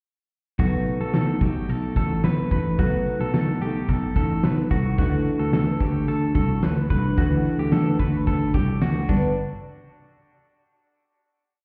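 A shimmering, octave-doubled twelve-string acoustic guitar strums open chord shapes from 0.6 seconds, while a bright, twangy clean electric guitar rings out a picked arpeggio figure washed in spring reverb, tape echo and plate reverb. Beneath them, a round, amped electric bass drives steady eighth notes and a big rock kit with a fat snare and punchy kick keeps a brisk indie backbeat at 110 BPM, moving through B7, Dadd9 and Gmaj9 before a final hit at 9.4 seconds. This youthful, nostalgic slice of jangly indie pop sounds muffled, as if heard through a wall, with a stone-room reverb around it.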